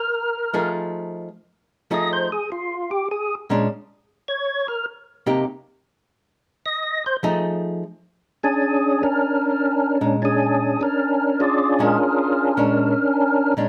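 A fat, lightly overdriven tonewheel organ opens this bluesy, soulful jazz excerpt, its percussive third-harmonic attack and key click turning through chorus vibrato and a slow rotary speaker as it solos over rootless minor-seventh and altered dominant chords. From 0.5 seconds a dark, clean, picked hollow-body archtop guitar, miked through its amplifier, joins up front in a swung 4/4 feel. Moderate studio reverb surrounds both parts, and the organ's solo gives way to a new section at 7.8 seconds.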